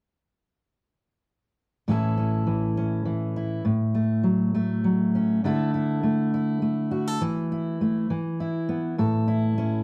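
Gentle and peaceful, this folk fragment in A major moves at an unhurried 68 BPM in 6/8. A solo fingerpicked steel-string acoustic guitar, dark and full-bodied with a dreadnought's depth, sits up front from 1.9 s to 9.8 s, drifting from A through F#m/A, Dsus2 and Esus4 to E5 before settling back on A at 9.0 s. A wet studio reverb and a listening spot further back in the room lend the short passage a spacious air.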